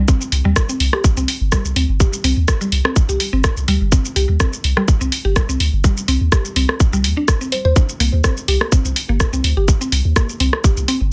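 Cool and sparse, this minimal techno excerpt in C minor runs at 125 BPM with a lightly swung 16th feel, built on an up-front, tape-colored electronic kick re-recorded in a large room, a deep, punchy sine sub bass with a pitch-drop attack, tube saturation and sidechain pumping, a small-room techno kit of warm hi-hats, rim clicks and shaker, and a woody, round FM mallet-like pluck riff with chorus, cassette tape, tape echo and sidechain pumping, all under light reverb and a dense, heavily limited master.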